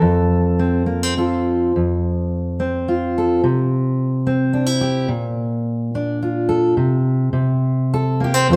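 Folk fingerstyle piece for a single steel-string acoustic guitar, nostalgic and gentle in mood, moving in 3/4 at around 106 BPM with a loose, rubato feel in F major. The fingerpicked guitar sits up front, its jumbo body giving a warm, full-bodied tone that spans from F2 up to C5. Harmony drifts from F to C and then Bb, passes through a chordless moment near 6.8 seconds, and settles on Am7/C at 7.3 seconds. A brief opening passage gives way to a second section at 1.7 seconds. The sound carries a generous large-studio reverb with a lingering tail, as though played live in one room, and this short cut of a longer piece ends at 8.6 seconds.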